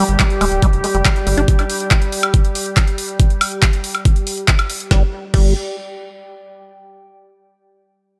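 A straight 4/4 pulse from an overdriven, knocking electronic kick and a layered drum kit of woody snare, bright hi-hats, handclaps, woodblock and crash cymbal drives this psychedelic trance excerpt, where a deep, round analog bass with tube saturation sits under a squelchy, resonant liquid acid bass riff that pumps through phaser and dub echo, while a morphing, mellow wavetable pad holds chorused chords until 4.9 s, a very quiet lo-fi tape-like pad warbles above through 6.6 s, and a barely audible downlifter passes early on.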